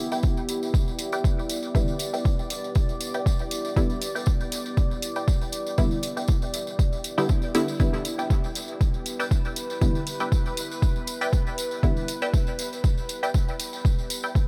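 A punchy, up-front electronic kick drives a lightly swung 119 BPM dub techno groove in E minor, joined by dark layered hi-hats and a jingly, close tambourine, while a moody, detuned sawtooth pad holds a sustained Em7 chord through chorus and built-in reverb, a bright, resonant, wave-folded chord-stab riff plucks through phaser and dub echo, and from 1.7 s to 12.0 s a lower, muted chord stab adds its own stabs coloured by chorus, phaser, cassette tape and dub echo, with the pad and both stabs sidechain pumping in a dry, nocturnal, meditative mix.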